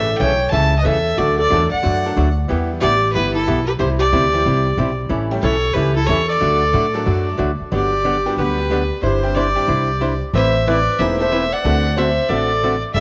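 A moderate plate reverb gives this cheerful, playful country excerpt a roomy sheen as it swings along at 184 BPM in 4/4. A clear, nasal fiddle with light vibrato carries the melody up front, joined by a raspy, growling clarinet with scooped notes playing a second line in a jazz style, while a dark, compressed hollow-body archtop guitar supplies the accompaniment and a woody, thumpy upright bass played pizzicato anchors the bass line. A jangly, metallic tack piano sits in the background until it drops out at 12.1 seconds, just after the harmony, having turned to a Gmaj7 at 7.7 seconds, arrives at a closing D7 at 11.6 seconds.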